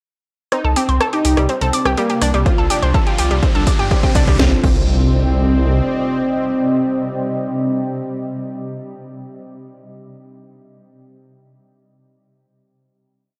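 A deep, rumbling detuned saw bass gallops in sixteenth notes up front through this dark, driving melodic techno piece at 124 BPM in C dorian, with a beating, detuned tone and sidechain pumping. A smooth, full-bodied supersaw carries a repeating riff through analog chorus, delay and cassette-tape colour, while a nasal, wave-folded analog pluck runs a 16-step arpeggio sequence with chorus and tape echo. A cracking snare backbeat, metallic programmed hats, rim clicks and crash come from the electronic kit, and a punchy four-on-the-floor kick joins at 2.5 seconds as a drum fill and a background riser drive the build over Cm, Bbmaj7/C, Ebadd9/C and F6. A moody, sub-octave pad with a slow attack and built-in reverb sits above a swarming, ring-modulated granular drone, and the piece arrives at 4.4 seconds on a final, sustained Cm chord, with the impact effect in the background. The whole has a dry, gritty hardware character with a cassette-tape tint and light reverb.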